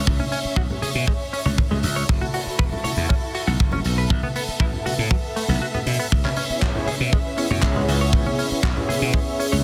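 A growly, glassy slap bass pumps up front through this groovy, sensual nu-disco excerpt at 119 BPM in C# minor, alongside a tight acoustic kick that drops out briefly at 5.6 seconds, a rolled-off funk kit with handclaps and hi-hat, distant low-tuned congas, a twangy clean electric guitar riff with chorus and delay, veiled con sordino violins holding gritty sampled chords over C#m7, F#m7 and B7sus4, and a round, detuned synth brass that enters at 6.5 seconds.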